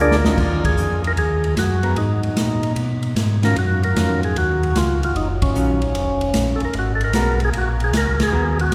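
Drenched in a cavernous church reverb, this brief, bluesy cut from a soul jazz organ trio swings, opening on a drum fill before the band hits accents at 0.6, 5.4 and 8.1 seconds over moody minor ninth chords. Up front, a full, percussive tonewheel organ carries the melody with key click and a slow rotary speaker, while a second tonewheel organ with a stopped rotary speaker lays down a piping, scooped bass line with vibrato. Behind them, an acoustic big-band kit with dark cymbals and a punchy kick drives the swing, and a clean, picked hollow-body electric guitar comps softly in the background.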